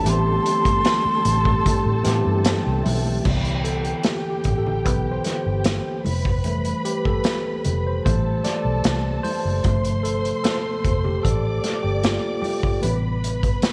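A bright, clean tine electric piano sits up front through this romantic, smooth 1970s-style soul excerpt at 75 BPM in C major, playing a fill from 2.1 seconds before taking a solo from 3.3 seconds over chords moving from Am9 through Cmaj7, Fmaj7 and G9sus4. A breathy, expressive concert flute with tape echo opens the melody until 2.5 seconds, while a tonewheel organ with key click and slow rotary speaker holds sustained chords in the background until 3.2 seconds, and a distant, woody string section with lush bowed vibrato carries a second line throughout. Underneath, a dark, foam-muted fingered electric bass, a punchy, up-front vintage drum kit in a pumping small room, and very quiet, ringing congas played with soft hands fill out the groove under light studio reverb.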